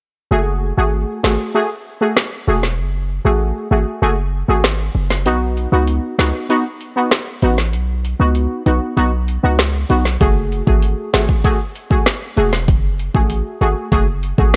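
A straight 4/4 dancehall groove at 97 BPM in F# dorian, sultry and tough, is cut from a longer piece. From 0.3 seconds, a warm 808-style bass gives boomy, sine-based low notes with a noise layer and a fast, decaying attack, and a synth brass stab adds brassy, punchy, nasal sawtooth stabs, detuned and filter-plucked with chorus. The afro-pop drum kit joins at 1.2 seconds with a woody snare, metallic hats and rim clicks, its electronic, produced sound overdriven and re-recorded in a small room, while its deep kick stays muted until 10.2 seconds. The harmony moves from F#madd9 to B at 5.3 seconds and back, with all three parts up front in a digital ambience.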